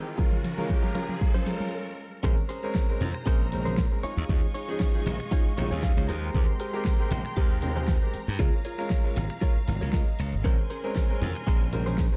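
A punchy, up-front electronic kick anchors this cosmic, groovy nu-disco cut from a longer piece, moving at 117 BPM in Bb dorian with a light swing on the sixteenths. The opening build-up pairs a drum fill with an electronic riser until a stop at 1.7 seconds, and the drop lands at 2.2 seconds as a glassy, tube-saturated slap bass enters alongside soft-handed congas ringing in the background of a large room. The pop drum kit adds finger snaps, bright hats, a fat snare and toms, while a clear grand piano with long sustain plays accompaniment through sidechain pumping and delay. A twangy, compressed clean electric guitar, recorded direct, picks a riff through lush chorus and delay and steps forward with fills at 5.3 and 9.4 seconds. Behind it all, a distant, bowed string section holds sustained chords with vibrato and sidechain pumping, moving through Bbm9, Eb9sus4, Abmaj9 and Db6 under light reverb.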